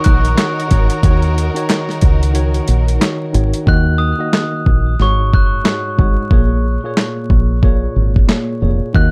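Over vinyl crackle, a gritty, compressed sampler-style drum kit with a thumpy kick, snare, hi-hat and handclaps anchors this dark, tough boom-bap hip-hop excerpt. It plays alongside a worn, slightly out-of-tune, lightly overdriven tine electric piano, a ringing, bell-like glockenspiel melody struck with soft plastic mallets, and lush bowed string stabs that drop out at 3.6 s, while a round, foam-muted fingered electric bass sits up front, a barely audible finger snap flickers early on, the kick briefly mutes, and the hi-hats fall away from 3.7 s as the chords move on.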